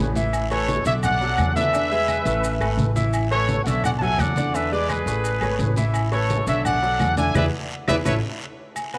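Light studio reverb frames this joyful, sunny salsa excerpt, where a tight, vibrato-laced trumpet section carries the melody up front over a brilliant grand piano with audible action noise and a dark, thumpy pizzicato upright bass on gut strings. Soft-handed, low-tuned congas sit distant in the background with ringing agogo bells and timbales and grainy maracas, while a raspy, dry guiro and very quiet woody claves sound close. From 7.4 to 8.8 seconds, a drum fill and a band accent close the phrase.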